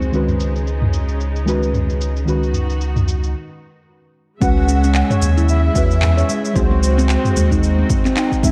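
A mellow handpan rings out in arpeggios from 4.4 seconds, its soft-fingertip tone carried by digital delay, in this excerpt of earthy, meditative organic downtempo at 112 BPM in C# minor with a swung sixteenth feel. Underneath, a deep, warbling chord stab with chorus, a clear, bowed symphonic string section and a round sine sub bass all pump with sidechain compression, while an organic electronic drum kit re-recorded in a large room brings handclaps, shaker and filtered toms, and a small, very quiet udu appears between 0.3 and 2.7 seconds. After a break from 3.3 seconds, a punchy layered kick arrives alongside a breathy, flute-like synth lead with vibrato and ensemble chorus, as the harmony shifts from C#9sus4 to C#m7 and G#7/C# within a dark production touched by light reverb.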